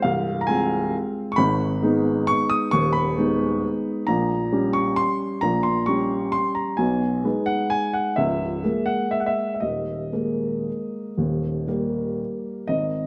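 A warm upright piano plays alone throughout this short classical waltz, its woody, polished tone sitting present and up front. The mood is bittersweet and nostalgic, with the triple metre handled in a flexible rubato that lets the phrases breathe. The harmony moves through minor and diminished colours, passing from G#m through a half-diminished chord to a suspended D# before resolving onto D# near 11.2 seconds. The piano spans a broad range, from deep bass notes up into the high treble. A moderate recital hall reverb gives the sound a natural sense of space around the instrument. The excerpt is cut from a longer piece, ending at 13.1 seconds.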